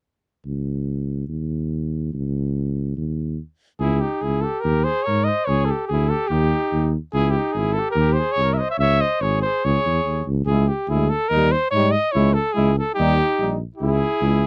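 Virtuosic and bittersweet, this Balkan folk brass excerpt moves at 144 BPM in a swung 2/4 in C# Hungarian minor, opening with a mellow, close-miked tuba alone on the bass line before a brief stop. At 3.8 seconds a warm, present cornet takes the melody up front with light vibrato, joined by a smooth-topped trumpet on a second line in a classical style. From 10.5 seconds a brilliant trombone and a distant, roomy euphonium add background accompaniment, all captured in a dry, close 1970s-style studio sound.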